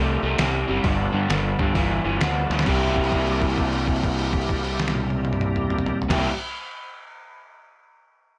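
Blues rock power trio with a southern rock edge, this driving, raunchy 131 BPM excerpt in C mixolydian swings its eighths as a crunchy, double-tracked overdriven guitar riff sits up front over a growling, bright fingered bass and thumpy, muffled sampler-style drums that enter at 0.4 seconds, while a thick, gritty tonewheel organ holds sustained chords in the background through chorus vibrato and a slow rotary speaker, with a drum fill at 2.4 seconds leading into a held note from 2.7 seconds as the chords move between C7 and G7.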